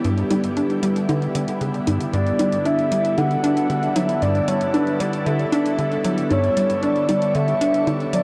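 A straight 4/4 pulse at 115 BPM is driven by a tight, punchy sawtooth sequencer bass riff with a filtered pluck and tape echo, over electronic hi-hat and congas with metallic hats, in this cosmic, expansive slice of ambient, sequencer-driven space music in G lydian resting on a G6 chord. A detuned analog pad sustains swirling, evolving chords through phaser and chorus, and at 2.1 s a soft, round, octave-layered synth lead enters with a dark sub-octave, vibrato and tape echo. A wet shimmer reverb with a 7.3 s tail bathes the sound, and the recording is cut from a longer piece.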